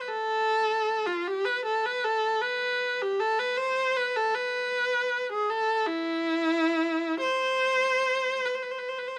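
In a loose, rubato 6/8, this mournful and meditative classical excerpt features a single unaccompanied viola, bowed with vibrato and a clear, focused tone, placed up front in close, detailed sound with light reverb, playing alone from 0.0 to 9.2 seconds.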